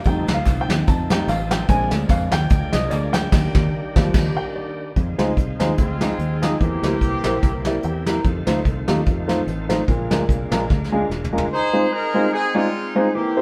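Heard in a moderately reverberant stone room with the band playing live together, this soulful, hopeful uptempo gospel passage swings lightly, with a woody upright piano up front over brushed drums with a fat snare and punchy kick, a foam-muted fingered electric bass, a shouting tonewheel organ with fast rotary speaker and light overdrive in the background, a very quiet, dark French horn section holding chords, and compressed tambourine and handclaps that stop at 3.2 seconds, while a clear, tight horn section carries the melody from 5.8 seconds and returns at 11.5 seconds alongside the piano to the end.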